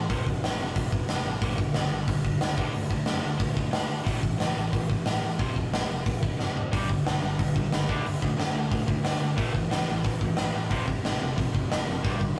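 A rough rehearsal-room sound with light reverb frames this energetic, rebellious punk rock excerpt at 181 BPM, where a punchy, up-front acoustic drum kit with a medium-tuned snare in a bright stone room drives an overdriven cranked stack guitar riff and a fuzzy, overdriven picked electric bass through F, G5, D5 and A5 chords, a drum fill at 6.4 seconds leading into a second distorted, compressed electric guitar joining with a riff from 6.7 seconds.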